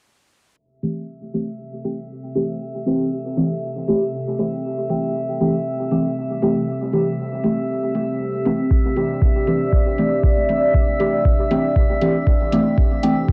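Through a muffled, cassette-softened haze with springy digital ambience, this meditative, hypnotic dub techno fragment sets deep, mellow chord stabs up front, echoing through dub delay under a filter sweep, over a moody analog pad and a glassy, drifting harmonics texture, both breathing with sidechain pumping, while a faint, metallic, overdriven hi-hat ticks in the background and a gritty, deep kick drum joins at 8.7 seconds.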